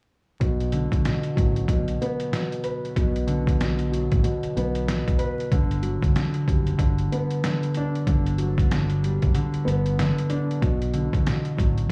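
An overdriven, pitched-down sampler-style drum kit with a thumpy kick, medium-tuned snare and hi-hat drives this tough, gritty boom-bap hip-hop excerpt at a swung 94 BPM in B minor, where a dark, mellow grand piano with long sustain and cassette-tape color moves from Bm to Gmaj7 over a round, fingered electric bass, all set in light reverb with small-room ambience and vinyl crackle, and the kick drops out between 9.3 and 10.6 seconds.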